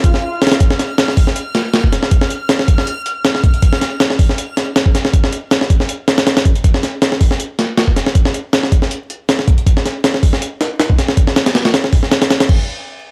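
A drum and bass rhythm at 159 BPM in 4/4 runs with a light 53% swing on the sixteenths, carried by a jungle sampler-style drum kit that plays from the start through 12.6 seconds. The kit sits up front and sounds compressed, pitched up and gritty, with a thumpy kick, a medium-tuned snare, hi-hat and crash cymbal, and a tape-warm tone that suggests it was re-recorded in a small room. Behind it, a reversed, swelling, granular texture around F6 opens the excerpt with a dreamy, bright, triangle-like tone, soft in attack and long in release with its own reverb, ending at 3.6 seconds. A brief electronic swell in the background marks the first 0.6 seconds. The mood is atmospheric and nostalgic, helped by vinyl crackle, a dry overall sound and a tuning of A4 = 435 Hz, and the passage is cut from a longer jungle piece.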